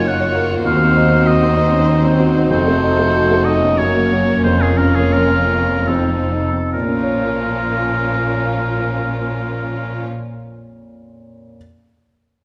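Passionate and brooding, this excerpt from a romantic movement for piano and orchestra in Bb minor moves in a rubato 3/4 between 68 and 104 BPM, slowing through its first half as the harmony passes from Gbmaj7 through F7b9 to a close on Bbm. A baby grand piano with open, long sustain carries the melody, while an up-front, clear solo oboe and a rich, focused violin section with vibrato and a smooth top trace second lines; beneath them sit a background viola section, very quiet, distant, mellow French horn chords, and an expressive, soft-attacked cello section joined by an intense double bass section on the bass. The orchestra stops around 10.1 seconds, leaving the piano alone until 11.6 seconds, inside a moderate scoring-stage reverb.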